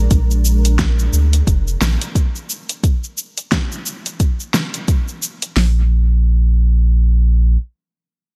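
A dry, close-up sound frames this hypnotic, mystical organic downtempo fragment at 88 BPM in Bb major with a lightly swung 16th feel, where a round, dark analog bass, filter-swept and coloured by tube saturation and sidechain pumping, holds the low end until 7.6 s, while two layered electronic deep house kits sit up front with a tape-warmed tone, one bringing a deep kick, fat snare and metallic hi-hats and a softer one adding cabasa, before both drop out by 5.8 s.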